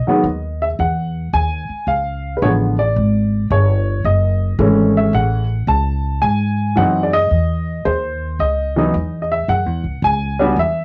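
Jazz piano trio at a relaxed 110 BPM with a swung 4/4 feel, this warm excerpt sets an intimate baby grand piano melody, with audible action noise, short sustain and a cassette tape colour, up front beside a woody pizzicato upright bass on steel strings, both in a moderate studio reverb on a home cassette recording, as the harmony moves from Emaj7 through F#m7 and G#7b13 to C#madd9.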